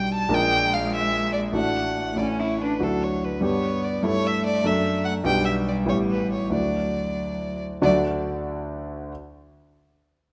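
Close, detailed microphoning catches a moderate scoring-stage reverb around this graceful, spirited excerpt of a quick classical-period movement for piano trio, set in 6/8 with a rubato feel. A smooth, vibrato-rich violin carries the melody up front, while a warm, focused bowed cello sings the second line beneath it and a clear concert grand supplies accompaniment with deep, natural bass. Violin and cello stop at 8.1 seconds, leaving the piano alone until 9.1 seconds as the music moves into a new section.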